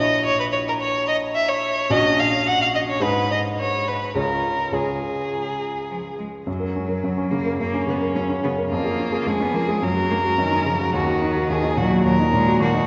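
Bathed in a long cathedral-like reverb, this cheerful, graceful excerpt from a quick classical-period movement for piano trio moves at 107 BPM in F# major. A focused, vibrato-laden violin sings the melody up front over a clear, polished baby grand piano accompaniment. At 5.9 seconds a soft-attacked, expressive cello joins with a second line, bowed with vibrato and portamento.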